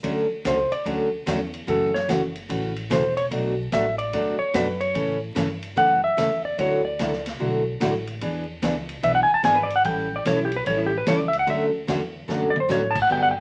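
A clean, dark lap steel guitar carries the melody up front from 0.5 s, its slide lines ranging from E4 to A5 in what plays as a solo across this short cut from a longer western swing number in D major. Underneath, a warm, picked dreadnought acoustic guitar sits forward in the mix as accompaniment, moving through chords such as Dmaj7, F#m7, Bm7, Dadd9, E7 and A7. An upright bass with gut strings gives a woody, thumpy pizzicato low end, while a vintage drum kit with dark cymbals, a punchy kick and a rolled-off top keeps time, adding a fill at 12.3 s. The tempo is a bright 147 BPM in 4/4 with a swing feel on the eighths, giving the piece a cheerful, swinging mood. Moderate studio reverb and a layer of vinyl crackle lend the sound an aged, old-record character.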